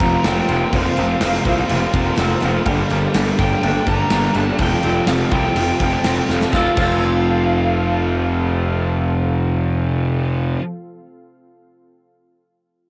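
A hazy, wistful shoegaze and dream pop excerpt at 124 BPM in F major opens with a lo-fi overdriven lead guitar singing high over a growly, up-front fuzz bass, a gated 80s kit with bright cymbals and a faint jingly tambourine, a twangy clean arpeggiated guitar with subtle chorus, a biting double-tracked overdriven riff, a thick fuzz riff, a slightly broken-up guitar through a small old amp with reverse reverb, and a deep, detuned ambient pad that enters at 0.4 seconds, all on a dry home cassette recording where the drums and tambourine stop at 6.9 seconds just after a drum fill, leaving the guitars, bass and pad to carry on.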